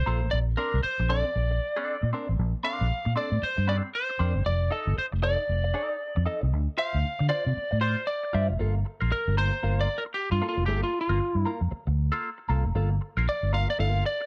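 A swung 116 BPM funk groove in G minor drives this sly, hypnotic excerpt, where a round, punchy muted bass sits up front beside a clean, compressed rhythm guitar colored by wah and spring reverb, while a dark, slightly broken-up lead guitar carries the melody over Bbmaj9, F13 and Dm7 before taking a solo from 8.6 seconds over Gm9, all captured in a dry, close 1970s-style studio sound.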